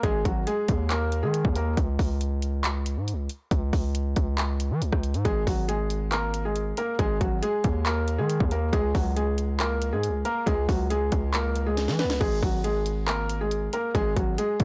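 A menacing, dark trap excerpt at 138 BPM in a half-time 4/4 feel opens with a soft, felt-muted upright piano melody over a G#sus2 chord, a distorted, heavy 808-style bass with a saturated noise layer and fast attack, and an electronic trap kit of hard-clipped kick, sharp snare, metallic hi-hats, handclaps, rim clicks and crash. The intimate, mellow piano drops out at 1.7 seconds and returns at 5.2 seconds, moving between G#sus2 and C#5 while the aggressive bass and drums carry on throughout. A brief drum fill at 11.8 seconds leads back to G#sus2, all captured in a dry, blown-out, overdriven recording with every part up front.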